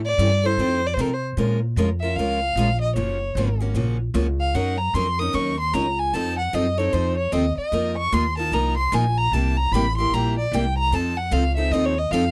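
Swung eighths in four drive this fiery, virtuosic gypsy-jazz passage, cut from a longer piece, with a woody, thumpy pizzicato upright bass on gut strings and a bright, fresh-stringed picked steel-string acoustic guitar carrying the accompaniment up front. A warm, close bowed violin opens with a brief expressive phrase of vibrato and portamento that ends at 1.2 s, and a rich, focused second violin with a smooth top enters at 2.0 s to carry the solo over minor-seventh, major-seventh and dominant-seventh changes. Light reverb lends the small acoustic group a sense of space.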